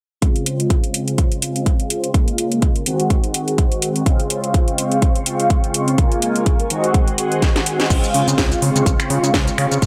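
A punchy electronic kick drives this filtered disco house excerpt at 125 BPM in 4/4, with a 56% swing on the 16ths giving the groove a funky, joyful bounce. The house drum kit sits up front beside it, with a cracking snare, metallic hi-hats, shaker, finger snaps and crash cymbal, and both drum parts carry a tape-warmed, small-room character. From the start, mellow synth brass carries the accompaniment in Db major through a Dbmaj7, Bbm7 and Ab7 progression, its round, dark, brassy tone colored by chorus, phaser, cassette tape and sidechain pumping as a filter sweep runs across it. At 4.1 seconds a phased string machine enters in the background with bright, swirling, vintage sustained chords under ensemble chorus and phaser. A drum fill leads into a new section at 7.9 seconds, where a fat, thick analog bass arrives with tube saturation and its own filter sweep, all set in light reverb and digital ambience.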